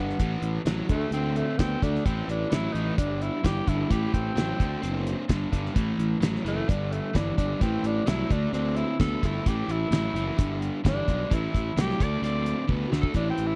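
Brooding and driving, this classic rock excerpt moves at 130 BPM in A dorian, with a breathy, raspy tenor saxophone soloing over the whole 13.6 seconds, its tone given a tape echo. Two overdriven, picked electric guitars play the riff, one warm with spring reverb and the other bright and set in the background, while a growly fuzz bass and a cloth-damped, thuddy drum kit with a fat snare and tight kick sit up front. The dry, close 1970s-style studio sound frames a drum fill from 12.7 to 13.2 seconds near the cut.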